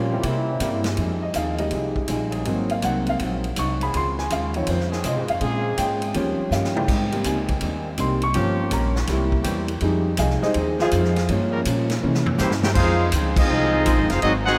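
A warm concert grand piano takes a solo from 1.0 to 12.8 seconds, its intimate, natural tone carrying deep bass and audible action noise through a sultry F minor progression in this big band swing excerpt at 163 BPM. Beneath it, a growly, woody upright bass played pizzicato and a dark, clean hollow-body electric guitar in the background keep the swing moving, while a big-room drum kit with a punchy kick and medium-tuned snare adds fills at 6.5 and 12.0 seconds. A brilliant trombone section holds sustained chords in the background with light vibrato, and a bright, close-miked trombone section voices a second line at the very start and again near the end. At 12.4 seconds a smooth-topped trumpet section comes up front with the melody, shortly before the band moves into a new section at 12.8 seconds, punctuated by a band accent at 13.3 seconds. The whole ensemble sits in a vast, echoing space with a huge, wet reverb tail.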